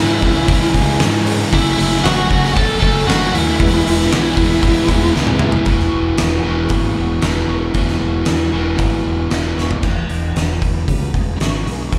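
A compressed fuzz lead guitar carries the melody at the opening of this anthemic, cathartic quiet-loud alternative rock excerpt, its distorted tone trailed by digital delay until it falls silent at 5.1 seconds. Beneath it, a biting overdriven guitar plays a riff up front, while a dark, thick fuzz guitar with slapback echo adds its own riff in the background. At 116 BPM in a straight 4/4 in E major, the harmony moves through C#m, F#m and E before arriving on Eadd9. An oversized, low-tuned acoustic drum kit with a fat snare, punchy kick and dark cymbals sits up front in a bright stone room, and a growly fingered bass with overdrive and fuzz holds down the low end. After a drum fill, a clean, twangy twelve-string electric guitar enters at 5.7 seconds with chorus-treated arpeggios in the background. The whole performance is heard as a live gig through the venue's PA, with light reverb and club ambience.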